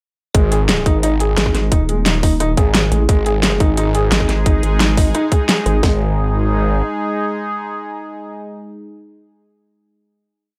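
Dark technical drum and bass at 175 BPM in 4/4, this short, futuristic piece opens straight into a drop at 0.3 seconds, with a G#5 chord underneath. A soft, felt-muted upright piano repeats a 16-step arpeggio sequence between G#3 and G#4, its mellow, vintage tone pumping against the sidechain and trailing tape echo. Two layered electronic kits sit up front: one pairs a tight kick with a cracking, overdriven snare in a broken beat, while the other adds a huge snare, rim clicks and metallic hi-hats. Below them, a thick, detuned saw bass holds G#1 in chopped, swirling phrases through a phaser and tube saturation, joined at 1.4 seconds by a nasal, vowel-sweep wobble bass whose modulated phrases shift in wobble speed with a chorused sheen. A bright, evolving resonant pad rises in with slow attack at 3.3 seconds and carries the final chord from 5.8 seconds until it fades out at 9.3, all set in a light reverb.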